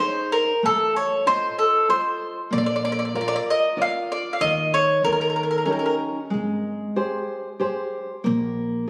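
Romantic and sunny, this short Italian serenade in Ab major drifts in a rubato 3/4 around 95 BPM. A mellow, woody mandolin sings the melody up front on picked double strings until 5.9 seconds, over a dark, full-bodied fingerpicked nylon-string guitar in the deep classical style, while a softer pizzicato upright bass with steel strings joins at 0.7 seconds. Moderate concert hall reverb surrounds the phone-in-the-room recording as the harmony moves from Ab through Bb and Eb7 to a closing Abmaj7.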